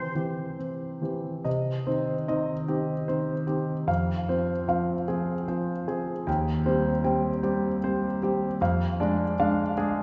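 A warm concert grand piano with intimate, audible action noise and deep bass plays a tender, serene classical accompaniment in C minor, moving in a rubato 6/8 at 50 BPM through C, Cm, Fm, Cm/Eb and Ddim/F within a wet concert hall reverb in this brief cut from a longer piece.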